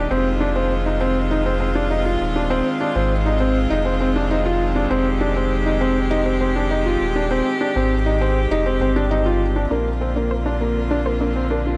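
Piano and strings electronica at 100 BPM in F dorian, intimate and hypnotic, where a felt-muted upright piano with a soft, mellow tone repeats a tape-echoed riff over sustained chords from a close, airy sul tasto string quartet and a round, deep sine sub bass, moving from Fm7 to Bbadd9 at 9.7 seconds as a lush, detuned sawtooth unison pluck enters in the background with tape-echoed arpeggios and a filter sweep, the dark mix sitting in a huge ambient reverb.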